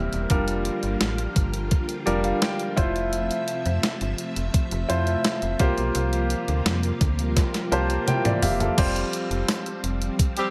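A clear, polished baby grand piano opens this uplifting, glossy 1980s-style pop passage in F major at 85 BPM, joined at once by a shimmering, vintage string machine holding sustained violin chords and a snappy FM bass with a metallic attack. A clean 12-bit digital drum machine comes in at 0.1 seconds, up front with a thumpy kick, a medium-tuned snare, hi-hat, tambourine, toms and crash cymbal, its tape-warm samples carrying the sound of a large room. The piano adds fills between 1.7 and 3.1 seconds and again from 7.4 to 8.8 seconds, the second one alongside a drum fill, while the harmony moves from Gm7/F through Fmaj7 and C7sus4. At 8.8 seconds a new section arrives on Fsus2, and a dark, roomy horn section with light vibrato and octave doubling punches in with a brief stab at 10.4 seconds. Light reverb and digital ambience give the mix a sleek sheen, and the passage is cut from a longer piece.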